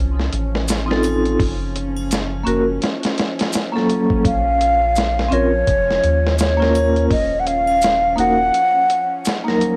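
Trip hop at 84 BPM in Bb harmonic minor with a swung sixteenth feel, cinematic and smoky, cut from a longer piece and captured as a home cassette recording. A deep, round sub bass and a tense, string-like drone with built-in reverb open the track, joined by a gritty, overdriven sampler-style drum kit with a thumpy kick up front, faint maracas and triangle behind it, and a metallic, ringing vibraphone with tremolo and tape echo moving through F7, Gb, Bbm and Ebm. At 4.3 seconds an airy, hollow concert flute takes the melody with vibrato and tape echo, sitting at the front of the mix as the sub bass drops out at 8.5 seconds.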